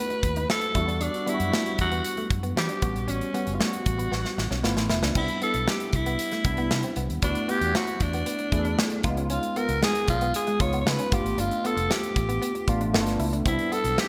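Polished 1980s jazz-funk pop with a glossy, upbeat mood at 116 BPM, this clip cut from a longer piece puts a raspy, growling alto saxophone up front with vibrato and scooped notes, over a worn, slightly out-of-tune tine electric piano with ensemble chorus and a slightly broken-up electric guitar riff with analog chorus tucked in the background. An up-front studio drum kit with a tight kick and gated reverb and a dark, foam-muted fingered bass drive the groove through lush extended chords from B7 and Em9 to Cmaj9 and D69, with a drum fill at 4.1 seconds leading into the second section at 5.2 seconds. The bright digital production is bathed in moderate plate reverb.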